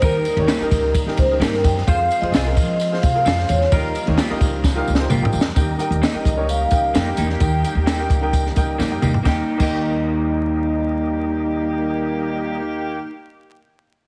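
A ringing, airy vibraphone with soft mallets carries the melody in this joyful, danceable excerpt of uptempo 1960s-style soul at 130 BPM in Eb mixolydian, joined by a distant, mellow horn section on a second line, an intimate upright piano with audible action noise, a thick tonewheel organ holding sustained chords through a fast rotary speaker and overdrive in the background, a woody, thumpy pizzicato upright bass, and slightly broken-up guitar stabs from a small old amp. A compact cocktail kit with a punchy kick and a jingly tambourine drive the groove, the kit adding fills, before both drop out at 9.7 s, the whole recording set in light reverb with a heavily compressed radio sound and vinyl crackle.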